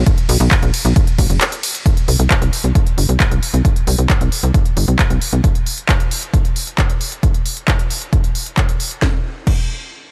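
A dry, close sound with little reverb frames this short cut from a longer uplifting trance track, driving and soaring at 134 BPM in a straight 4/4, tuned slightly below standard pitch. It opens on a drop, with a brief break near 1.4 seconds. A tight sequencer bass sits up front, its sawtooth and square-wave tones roughened by ring modulation and tube saturation, with a fast attack, a decaying filter pluck and sidechain pumping, moving between F#1 and C2 until it stops at 5.4 seconds. A punchy, layered electronic kick, also up front and tape-warm, runs from 0.1 to 9.6 seconds. Beneath it, a techno drum kit re-recorded in a small room adds a cracking snare, smooth hi-hats, handclaps, ride and crash cymbals at a lower level.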